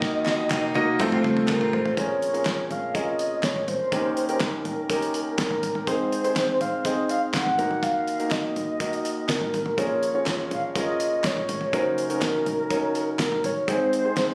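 Heard through a phone in the room with moderate studio reverb and compression, this driving, dramatic piano-driven pop excerpt sets a round, horn-like sawtooth synth lead with chorus, vibrato and a soft, sustained attack over an up-front concert grand piano with deep bass and plate reverb, while a full-bodied picked dreadnought guitar riff sounds only until 2.0 s alongside an opening drum fill from a dry, dark 70s kit with a fat snare, tight kick and rolled-off top, and hollow, vintage group handclaps sit in the background from 0.3 s.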